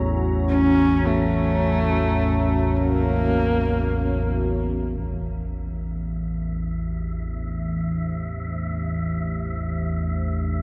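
A dark, husky horsehead fiddle sits up front, a single bowed player drawing a woody line with vibrato and portamento from 0.5 to 4.4 seconds, trailed by tape echo. This is an ominous, vast dark ambient drone in free time, a fragment cut from a longer piece. Beneath the fiddle, a warm analog drone of sawtooth and pulse-wave tones evolves through pulse-width modulation and chorus, with a filter sweep moving across it in the second half. A deep, full-bodied pad of detuned unison sawtooths and a sub octave holds moody sustained chords, moving from F# to A minor at 5.0 seconds and fading in over the closing stretch. High above, an airy, breathy wind-like noise layer hovers faintly, while a huge, bright impact lands barely audible at 5.0 seconds. The whole piece is steeped in wet cathedral reverb and the grain of cassette tape, giving the sense of a cavernous, echoing space.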